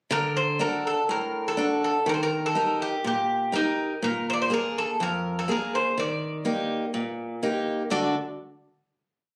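A Greek bouzouki and a picked steel-string acoustic guitar enter together at the top of this short, complete Greek folk piece, set in D phrygian dominant at 123 BPM in a straight 4/4. The mood is cool and brooding. The bouzouki carries a modal, ornamented melody up front, its double strings, some doubled at the octave, giving a metallic ring. The bright guitar sits equally forward, supplying an oompah accompaniment of bass notes and chord figures through a D, Eb, Bb7, Eb progression. Both parts play until 8.1 seconds, and the piece comes to rest on a final D chord. The sound has the feel of a phone recording made in the room, with moderate, club-like reverb and compression.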